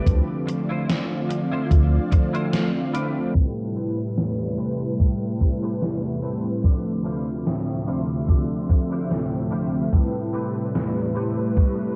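Melancholic and woozy, this vaporwave excerpt drifts at 73 BPM in D dorian, its gently swung sixteenths moving over a slow alternation of Dm9 and Am9 chords. A mellow synth brass carries the accompaniment up front, round and detuned with vibrato, roughened by 12-bit sampler grit and trailed by diffuse ambient delay. Beneath it, a soft string machine holds silky sustained chords through a phaser and ensemble chorus, while a glossy, nasal chorused synth bass sounds only in the opening two seconds. A thumpy electronic kick sits prominently in the mix, joined by a gated 80s digital drum machine whose hi-hat and gated-reverb snare sound tape-warm and re-recorded in a large room. A clean, hollow-bodied semi-hollow electric guitar enters at 0.5 seconds, plays a fill just before a brief break, and from 3.4 seconds its riff moves under a filter sweep as the second section begins. The whole mix is soaked in a lush hall reverb and cassette haze, its highs softened for a dreamy, faded feel.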